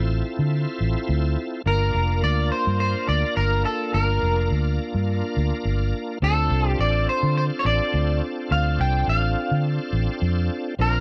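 A twangy, slightly broken-up electric guitar with lush chorus carries the melody from 1.7 seconds, sitting up front over a dark, round, foam-muted fingered bass and a bright, shouting tonewheel organ, lightly overdriven with chorus vibrato and a slow rotary speaker. This mournful, smoky soul blues excerpt moves at 105 BPM in D minor with a straight-eighth feel, shifting from Dm7 to Gm7 and back to Dm7 at 6.2 seconds. The sound is dry and close, like a 1970s studio recording.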